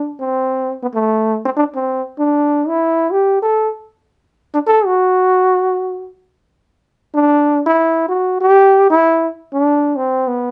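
A warm trombone plays solo and up front through this brief jazz excerpt of about 10.5 seconds, its jazz-styled line colored by vibrato and scooped notes. The swung phrasing gives it a sophisticated yet playful mood. Light reverb surrounds the horn, and the top end stays soft and rounded.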